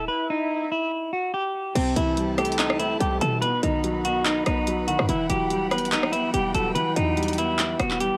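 A dark, clean, fingered electric guitar carries the melody up front from the start, over a short, punchy 808-style bass with a tight, decaying sine tone and an electronic swell, setting a menacing, brooding trap mood at 144 BPM in a half-time feel in E harmonic minor. At 1.8 s an overdriven trap kit with bright hats, handclaps, rim clicks and crash arrives, joined by a soft, felt-muted upright piano with cassette-tape colour and a rich, biting string section holding vibrato chords in the background. The chords move from Em through C6 and B to Emadd9, all wrapped in a lo-fi home-cassette sound with digital ambience, in a short cut from a longer piece.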